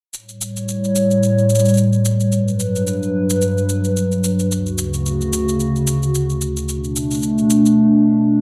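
The recording has a dark, warm production with light reverb. This is a delicate, nostalgic folktronica piece at 110 BPM in 4/4, in A mixolydian with a gentle swing on the sixteenths. An electronic shaker opens at 0.1 seconds, sitting low in the mix with a tape-softened sound that was re-recorded in a large room. From 0.5 seconds, an up-front, warbling pad carries sustained chords from D2 to C#5. The pad blends detuned square and triangle tones that are wave-folded, with a slow attack and long release, shaded by chorus, its own reverb and the grit of a vintage 12-bit sampler. Cut from a longer piece, it moves through A7, Gmaj7, Dmaj7 and Bm7, with the shaker stopping at 7.8 seconds and the mellow pad lingering to the close.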